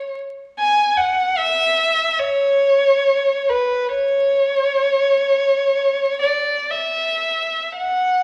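In free, unmetered time, this short classical fragment for unaccompanied violin unfolds a meditative, yearning line that sits between B4 and G#5 and is cut from a longer piece. The single bowed violin is warm and expressive, sitting up front with vibrato and portamento colouring each phrase across its 8.2 seconds. A moderate large-studio reverb gives it space, and vinyl crackle adds an aged surface.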